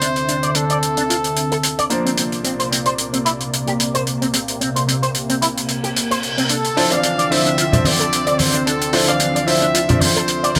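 A clear, smooth-topped trumpet section carries the melody with tape echo, stating a brief phrase and returning at 6.4 seconds in this sleek, sensual nu-disco cut at 111 BPM in D minor, with swung sixteenths over Dm9 and C9sus4 chords. A brilliant grand piano with a worn 12-bit sampler grit plays accompaniment, a thick, detuned sawtooth pad with chorus and phaser sustains the harmony, and a twangy, clean electric guitar runs an envelope-filtered riff through ensemble chorus and a low-pass filter. An airy, dry hi-hat sits up front, a reverse cymbal at 5.7 seconds leads into a build-up at 6.5 seconds, and soft-handed congas join at 7.7 seconds, all in a light small-room reverb.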